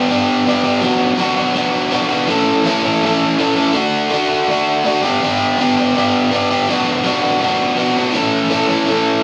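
A bright, overdriven electric guitar opens this upbeat, jangly rock clip on its own, picked, double-tracked and compressed, sitting up front with a slapback echo. Over a straight 4/4 feel it moves through G, Bm, A and D, ranging from E3 to A4. Light digital reverb gives the studio sound a little air until the cut at 9.2 seconds.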